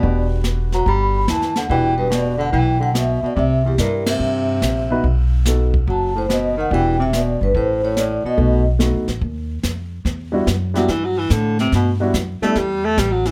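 A smoky, late-night small-group swing fragment opens with a ringing, metallic vibraphone melody with fast motor vibrato and plate reverb over a warm baritone saxophone second line, an intimate baby grand piano with audible action noise, a woody, thumpy pizzicato upright bass and a brushed kit with dark cymbals and a boomy kick, and after a band accent at 4.0 seconds and the vibraphone's exit at 8.6 seconds, the baritone saxophone takes a solo from 10.1 seconds with scooped notes and light vibrato.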